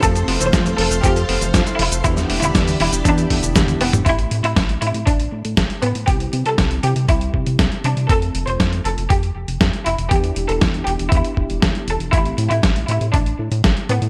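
A nostalgic, danceable italo disco passage in A minor at 119 BPM opens with everything at once: a clear, biting chamber violin section carries the melody with light vibrato and a touch of delay, while a lush, vintage string machine holds mellow chords in the background and a round analog pluck spins bright, chorused arpeggios beneath it. Driving the straight 4/4 groove are a gritty, thumpy electronic kick and an up-front, dusty soul sampler-style kit with cabasa, hi-hat, a medium-tuned snare and toms, both compressed and set in studio reverb. A glossy, dark chorused synth bass with tube saturation anchors the low end, and mellow, brassy synth stabs add a cassette-tinged colour. A drum fill at 3.6 s leads into the next section, where the string machine and pluck drop out at 4.0 s, leaving the violins, brass stabs, bass and drums to carry the Am7, C, F and Em7 changes. The brass stabs fall away at 13.1 s in this section cut from a longer piece, all framed by light digital ambience and bright 1980s-style production.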